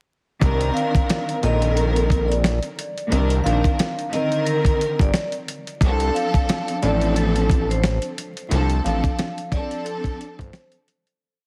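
Heavily compressed, radio-like sound in a small room, with vinyl crackle over it, frames this short, reflective yet tough boom-bap hip-hop piece at 89 BPM in C dorian, swung on the sixteenths. A gritty, sampler-style soul drum kit with a thumpy kick, fat layered snare and sixteenth-note hats lays down a laid-back beat, while a thick, detuned sawtooth analog bass with a filter sweep loops a deep line up front. Lush bowed strings play chopped chords with vibrato, moving from Cm9 to Dm7 at 5.8 seconds, and a metallic, ringing vibraphone repeats a short melody through analog delay, before the whole piece fades out from 8.5 seconds.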